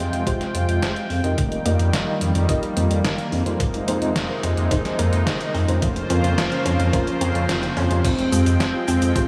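Steeped in a lush hall reverb over a small-room ambience, this cinematic, driving synthwave excerpt rides on a thick detuned saw bass and a thumpy electronic kick, with a warm sawtooth pad pumping against the sidechain under chorus and tremolo. A very quiet unison pluck spins arpeggios, while a dark, warbling FM electric piano adds stabs in the background through a filter sweep, chorus and digital delay, and a tape-toned 8-bit drum machine supplies snare, hi-hat, cabasa and crash. At 8.0 seconds a round, octave-layered synth lead enters holding C4, colored by vibrato, tremolo, chorus and delay.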